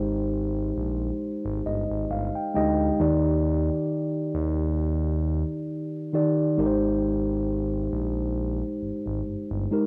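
A mellow, clean tine electric piano sits up front, heard as if through its built-in speakers, comping through Abmaj7 and Ebmaj7 chords and slipping in a fill from 1.2 to 3.0 seconds in this dreamy, romantic contemporary R&B fragment. Beneath it, a smooth synth bass with a sawtooth-and-triangle tone and fast attack holds sustained low notes, also up front, over a gently swung 16th-note feel. The dry, gritty hardware recording carries a cassette-tape character alongside studio reverb and a digital ambience.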